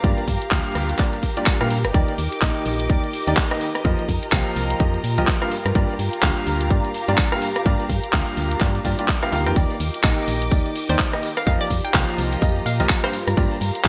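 A clear baby grand piano riff with digital delay and sidechain pumping leads this energetic, bittersweet piano house cut in G minor at 126 BPM with a 16th-note swing, over a punchy, up-front electronic kick, a house kit of handclaps, hi-hat, rim click and shaker with gated reverb, a round, dark FM bass, lush background strings, a breathy, very quiet pad and a Gm7–Ebmaj7–F9sus4 progression, while a faint tambourine joins at 9.6 s and a hollow, detuned square pluck with chorus adds a brief melody from 10.9 s in a bright 1980s-style digital production.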